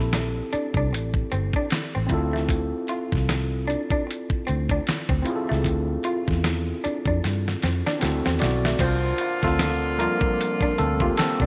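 Sultry and late-night, this R&B and neo-soul excerpt in D minor moves at 76 BPM with a swung 16th feel, built around a barky, overdriven tine electric piano up front alongside a dark, foam-muted fingered electric bass and a slightly broken-up, lo-fi electric guitar carrying a second line. A dusty sampler-style drum kit with a thumpy kick, fat snare, hi-hat and crash sits forward in the mix, playing a fill from 7.2 to 8.8 seconds. At 8.8 seconds the electric piano takes a solo while a clear, tight horn section adds stabs, all framed by an echo chamber reverb and vinyl crackle.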